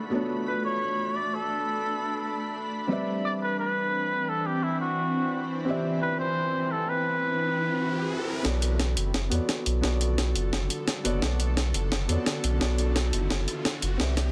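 A dense, heavily limited modern master sits in a lush hall reverb, opening this soulful excerpt of liquid drum and bass at 173 BPM in B phrygian. A felt-muted upright piano, soft and intimate with tape echo, plays accompaniment beside a shimmering, ethereal ambient pad whose slow-attack, granular chords carry an octave-up sparkle, chorus and a vintage warble, moving from Bm9 to Cmaj9. From 0.5 seconds a cup-muted trumpet takes the veiled, jazz-style solo melody up front, with vibrato and tape echo. Electronic sound effects sit in the background, and a riser from 6.9 seconds leads into the build-up. At 8.4 seconds the chord returns to Bm9 as a deep, round sub bass and a gritty, pitched-up, sampler-style breakbeat kit arrive together, the kit playing a drum fill on hi-hat and a medium-tuned snare with soft clipping.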